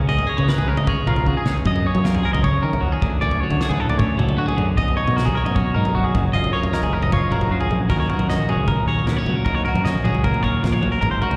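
Math rock with a midwest emo lean, this bright, playful excerpt moves at 154 BPM in a straight 4/4, with a clean, compressed twelve-string electric guitar picking its accompaniment up front through spring reverb while a twangy electric guitar picks arpeggios with spring reverb and slapback echo. Beneath them, a growling fingered bass sits in the background with overdrive, and a loose indie kit with a fat snare, punchy kick and dark cymbals drops a drum fill at 1.3 seconds. Jazzy extended chords such as F#maj7 and Dmaj7 colour the first section before a shift to D#m7 at 7.9 seconds, all heard as a live gig through the venue's PA with recital-hall reverb.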